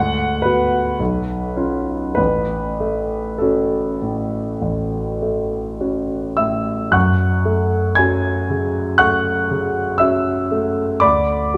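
Rubato in 4/4 at a slow 48-62 BPM, this yearning, wistful romantic nocturne in F# minor, cut from a longer classical piece, is played on a solo grand piano that sounds clear and up front with long sustain across a span from A1 to G#6, set in a wet recital hall reverb, its harmony moving from Bm/D through C#7/B to F#m/A before the opening passage returns at 6.9 s on F#m and turns back to Bm/D at 11.0 s.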